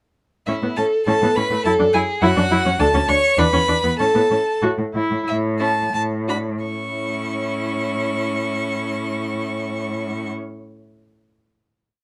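A quick, graceful and cheerful classical-period movement for string quartet in A major, played with rubato in 2/4 at 82-105 BPM, where the first violin carries a smooth, vibrato-rich melody up front, the second violin doubles the tune at the octave and adds after-beat and sustained chords, the distant viola drives a rhythmic ostinato and answers at phrase ends with expressive portamento, and the cello anchors a driving bass ostinato on the beats, all in light reverb, slowing from 3.4 s into a brief coda and a final chord held from 6.6 s.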